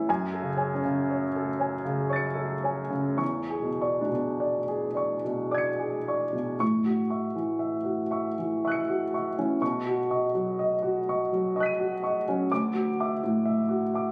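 In a slow, rubato 3/4 that drifts between 49 and 64 BPM, this impressionist classical piece for solo piano unfolds in A major with a dreamy, serene mood. A clear grand piano carries everything alone from 0.0 to 14.1 seconds, ranging from D2 up to D#7. Its sound is intimate and polished, sitting up front with long sustain and audible action noise close to the listener. The harmony glides through F#madd9 and E6, then restates its opening phrase at 6.6 seconds over A6, Badd9 and Dadd9, giving the passage a floating, open color. A moderate recital hall reverb surrounds the instrument, and the phone recording made in the room adds studio ambience and some compression. The clip is cut from a longer piece.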